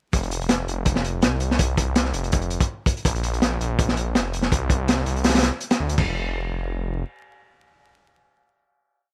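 A crunchy, heavily chopped breakbeat kit with punchy kick, medium-tuned snare, toms and dark cymbals drops in at 0.1 seconds beside a thick, menacing detuned saw bass holding long sustained notes, opening a nostalgic, atmospheric drum and bass and jungle piece at 164 BPM with a light swing, saturated grit on the drums and a dry, up-front sound under a layer of vinyl crackle, before the kit stops at 6.1 seconds and the bass carries the final note until 7.0 seconds.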